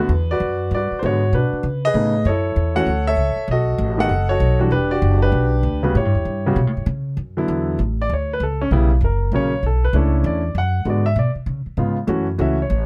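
A brisk swing at 195 BPM in 4/4 drives this relaxed jazz piano trio excerpt in D major, moving through chords such as D6, F#m7, B7 and Em9 before a D69 opens the second section at 7.2 s. The upright bass is plucked, woody and growly with steel-string bite, and sits up front next to a concert grand piano with a natural tone and deep low end, carrying the melody from the start and taking a solo from 7.2 s to the end. The close, detailed sound has little reverb, so both instruments feel intimate and present.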